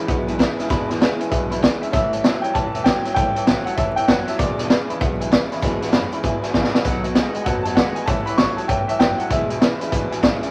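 Rockabilly at 195 BPM in E mixolydian, rowdy and upbeat with a swung feel, this short cut from a longer piece puts a clear, woody upright piano on the melody from the start to 5.0 seconds and again from 7.3 to 10.2 seconds. Up front, a vintage drum kit drives with a punchy kick and high-tuned snare, while in the background a twangy, slightly broken-up electric guitar through a small old amp plays a low riff over a jumbo steel-string acoustic guitar, a jangly, metallic tack piano and a thumpy, gut-strung upright bass. A honky-tonk piano fill and a drum fill land between 6.2 and 6.8 seconds as the chords move from E7 through A7 and B7, all under moderate studio reverb and a layer of vinyl crackle.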